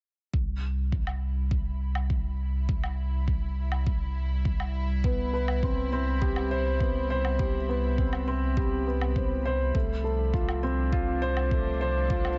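A mellow, woody upright piano riff with long sustain and tape echo steps up front at 5.0 s, giving this hopeful, tender piano-and-strings electronica piece its focus at 102 BPM in C major. Beneath it, a round sine sub bass and a reedy, distant string section with light vibrato and a gut-string tone both pump to the sidechain. The strings fade in across the passage while a deep, layered electronic kick and a small-room woodblock keep a straight 4/4 pulse. The harmony moves from Cmaj7 to F6/C at 9.7 s in a dry mix with a softened top end, cut from a longer piece.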